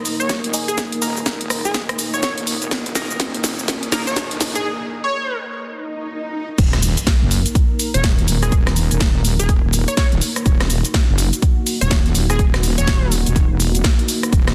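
A heavy, saturated wobble bass sits up front in this aggressive, swaggering bass house excerpt, entering at 0.2 seconds low in its register with overdrive, chorus and sidechain pumping that give it a resonant, wobbling drive. The track moves at 124 BPM in Eb minor with a swung sixteenth feel, opening on a build-up where a drum fill runs until 4.6 seconds, a brief break follows, and a riser and swell lead into the drop at 6.6 seconds, marked by an electronic impact. A punchy layered kick and a house kit with cabasa, crash, hi-hat, rim click and a cracking, soft-clipped snare carry a tape-warm character from being re-recorded in a large room. Above them, a catchy, bright plucky unison lead with analog chorus and tape echo carries the melody, while a dark, full-bodied analog pad holds sustained chords with sidechain pumping. In the background, a nasal band-passed chord stab with phaser and echo appears only until 4.0 seconds, and an ethereal, warbling airy pad drifts through the opening with its own reverb. 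The mix is dense and heavily limited in a modern style, with a light overall reverb.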